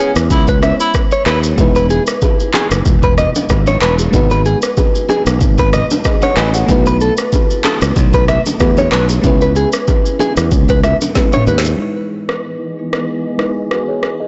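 A swung sixteenth-note afrobeats groove in 4/4 carries this romantic, breezy fragment, driven by an up-front, overdriven electronic drum kit with deep kick, woody snare, handclaps, rim clicks, shaker and toms, plus a growly, punchy fingered bass, while distant congas and bongos sit in the background from 1.6 seconds. A roomy tenor saxophone with light vibrato appears only briefly at the start, a bell-like, sparkling vintage FM electric piano warbles through chorus, and a clean, compressed direct guitar plays a bright picked riff with delay. After a drum fill, a lush bowed string section enters with sustained chords at 11.8 seconds under a filter sweep, and the whole recording sounds blown-out and overdriven, with a capped top end and light reverb.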